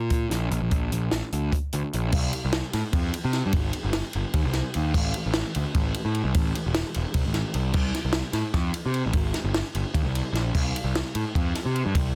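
Intricate and wistful, this short math rock and midwest emo cut moves in an odd 7/8 metre at 300 BPM, counted in eighths, with a straight feel. A fuzz-laden picked electric bass, overdriven and up front, carries the low end from the opening second to 12.1 seconds, ranging from E1 up to C3. A compact cocktail drum kit sits just as close, dry and natural with a high-tuned snare, punchy kick, hi-hat, ride and crash, all in a dense, heavily limited modern master with little reverb.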